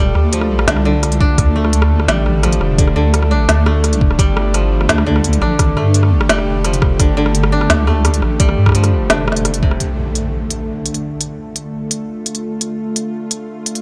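A half-time drum and bass groove at 171 BPM in D minor drives this dark, cinematic piece: an up-front electronic kit of woody snare, rim click and smooth hi-hats is joined at 1.2 s by a gritty, pitched-down, thumpy kick. Beneath it, a deep wobbling triangle-and-sine bass with chorus holds the low end, while a dry, fingerpicked koto plays arpeggios through dub echo, and a tense, bright, detuned string-like drone sustains chords over Dm and Gsus2 with vibrato and sidechain pumping. Around 9.8 s the bass and kick drop away as an electronic impact opens a new section, and the koto stops soon after, leaving the drone and drums to carry on under light reverb.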